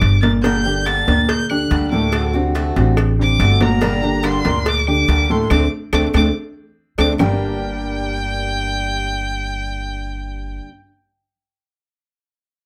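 A light reverb gives this short cut from a longer Cuban son and guajira piece an intimate, natural sound with a warm, danceable mood. At 142 BPM in a straight 4/4 and G harmonic minor, a rich, expressive bowed violin carries the melody high up, singing with vibrato and portamento and sitting up front despite a slightly distant quality. Beneath it, a warm baby grand piano plays arpeggios, while a dark, woody pizzicato upright bass holds the low end up front. Round, low-tuned cowbell and bongos with soft hands and vintage, band-limited colour play from the start alongside close, dry claves in the background, and a boxy, parlour-style picked steel-string acoustic guitar enters at 0.4 seconds with audible finger squeak. The harmony moves through Gm, D7, Gm and D5; the band hits an accent from 5.5 seconds, and the percussion drops out at 7.3 seconds as the music returns to Gm for the closing passage.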